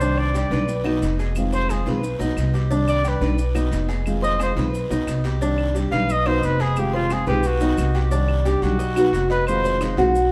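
A brisk straight 4/4 at 178 BPM drives this warm, nostalgic Cuban son and guajira passage, cut from a longer piece, where a punchy, vintage trumpet with light vibrato solos from 0.0 to 8.1 seconds over a bright, metallic tres picking arpeggios, a dark, thumb-plucked nylon-string guitar, a growly pizzicato upright bass up front, raspy guiro and grainy maracas in the background, and very quiet, dry claves, all set back in the room with a moderate plate reverb as the chords cycle through Cmadd9, B and Fm7.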